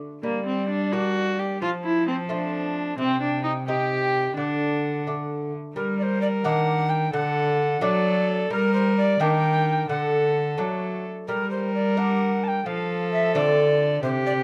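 A bright, fingerpicked lute with double strings and a rich, bowed cello with gut-string tone open this courtly, rustic renaissance-style consort dance in G harmonic minor, moving at 87 BPM in a straight 6/8. From 0.2 seconds, a mellow, airy alto recorder with a woody chiff and expressive vibrato carries the melody from a slightly distant place, while an up-front viola with a reedy, smooth top plays a second line. The cello holds the bass as a single period-style player, and the delicate lute sits beneath them. The passage is heard through close, detailed microphones with light reverb, and is cut from a longer piece.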